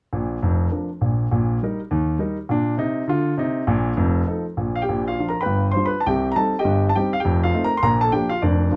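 A smooth, vintage grand piano sits up front and plays solo from 0.1 to 8.8 seconds in this exuberant, swinging stride jazz passage cut from a longer piece, ranging from F1 to C6 within a moderate club reverb.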